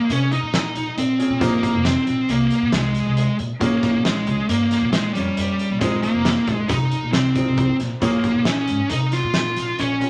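In a straight 5/4, this brooding, intricate progressive instrumental features a dark, overdriven lead guitar carrying the melody up front over a woody pizzicato upright bass and a loose indie drum kit with a fat snare and punchy kick in a pumping room, while a clear, boxy grand piano sits in the background and a grainy tube shaker sounds very quiet and distant, all moving through Bbm7, Ab69 and F7sus4 before settling on Bbm9.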